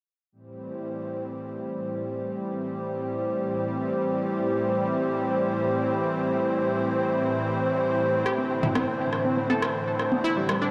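In free time, this driving, dreamy progressive house fragment in A minor, cut from a longer piece, opens at 0.3 s on a lush, thick sawtooth unison pad holding bright, chorused Am7 chords, and at 8.3 s a round, detuned analog pluck enters over it, spinning chorused, delayed arpeggios over Cadd9/A, joined by a punchy, tape-warm analog drum machine of congas, rim click and toms, the whole set in a moderate concert hall reverb.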